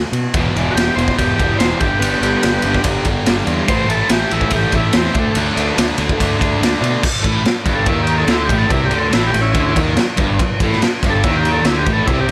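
A straight 4/4 pulse at 143 BPM drives this swaggering, rowdy garage rock excerpt, cut from a longer piece, where a gritty, up-front drum kit with dark cymbals and a punchy kick backs an overdriven fingered electric bass, a bright, double-tracked fuzz guitar riff entering at 0.3 s, and a buzzy combo organ with light vibrato that carries the melody from 0.7 s before taking a solo from 7.0 s, the whole band sitting in light reverb.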